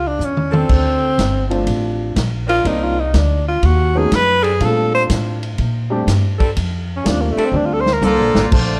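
Big band swing jazz at 123 BPM in Bb major, with a brassy, joyful mood and a swung feel, heard in a short excerpt cut from a longer piece. A mellow tenor saxophone carries the melody as a solo from the start, close-miked and up front, with vibrato, subtone and scooped notes. Beneath it, a woody, thumpy upright bass plays pizzicato, and a vintage drum kit with dark cymbals and a punchy kick adds fills near the opening and again from 7.5 seconds. A bright saxophone section holds soft-attacked chords in the background, while a baby grand piano comps from 1.5 seconds over harmony moving through Dm7, Cm9 and B9 to Bbmaj13. At 8.0 seconds a clear trumpet section and a bright trombone section enter together, all in a dark production with a moderate large-studio reverb.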